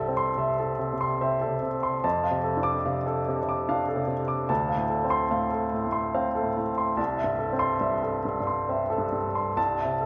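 A clear upright piano plays alone in this short neoclassical minimalist excerpt, cut from a longer piece, intimate and tender at 72 BPM in 3/4 with a rubato feel in C major. Woody and up front, with audible action noise and long sustain, the piano moves through Am/C, F6, Dm7 and C6 across a range from C2 to D6. A wet church reverb of 3.7 seconds surrounds it, placing the polished, present sound in a large, resonant hall.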